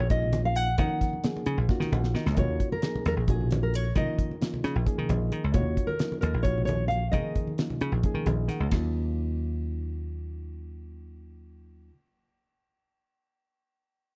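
Nylon-string guitar, barky electric piano and dry thumbed slap bass open together on an Eb minor 11 chord in this intense, funky electric jazz fusion excerpt, moving in a straight 7/8 at 264 BPM counted in eighths. The full-bodied, thumb-plucked guitar carries the melody up front with a slapback echo until 8.2 s. Meanwhile the lightly overdriven, reedy piano accompanies and adds fills, the punchy bass sits forward, and a damped 70s kit with fat snare and tight kick plays alongside low-tuned congas in the background, the drums adding a fill at 1.7 s. As the harmony shifts to Eb minor 9 at 8.7 s, piano and bass carry on to the end, all in a dark, warm production with little reverb.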